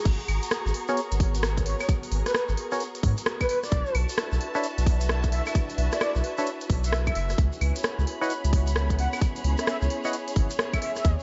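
UK garage in a skippy, late-night two-step groove at 131 BPM, where a breathy, flute-like synth lead with chorus and tape echo floats over a silky string machine, dark bowed studio strings and hollow organ stabs arriving at 0.9 seconds, while a round dub sub bass, a tight up-front electronic kick, a garage kit of crisp hats, claves, rim clicks and crash, and a grainy tube shaker drive chords of G#m11, Bm11 and C#m11 in a dry mix dusted with vinyl crackle.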